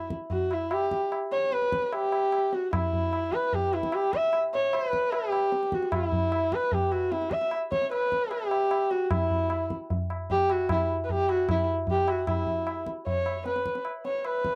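A dry, close recording with a 1970s studio feel and a touch of reverb carries this short piece of Hindustani classical music, cut from a longer performance in raga Shivaranjani on E at 151 BPM in a straight 4/4. A single bowed sarangi, dark and woody with a soft attack, light vibrato and gliding portamento, sings the longing, solemn melody between E4 and E5 up front, its sympathetic strings adding resonance. A low-tuned acoustic tabla with a short ring sits close beside it in a small-room sound, and at 12.3 seconds the music moves into a new section that runs to the end at 14.6 seconds.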